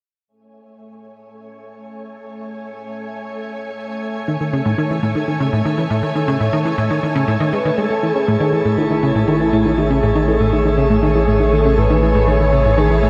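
Expansive and hypnotic, this ambient, sequencer-driven space music moves at 120 BPM in a straight 4/4, cut from a longer piece and tuned slightly below standard pitch, resting on a single Amaj7 chord. A lush, vintage string machine fades in with full ensemble chords from 0.3 seconds, its slow attack and long release thickened by ensemble chorus. At 1.7 seconds a pulsing, tempo-synced gated texture of detuned triangle tones joins, sitting in the background with chorus and its own reverb. A punchy, funky analog bass riff arrives at 4.3 seconds, its plucky sawtooth and square tones carrying a moving notch filter, cassette-tape colour and delay up front. An expressive synth lead takes the melody from 7.5 seconds, smooth yet dark, with vibrato, chorus and delay. At 8.3 seconds the second section begins as a round, deep analog bass anchors a low A with tube saturation, all bathed in a wet shimmer reverb with a long tail.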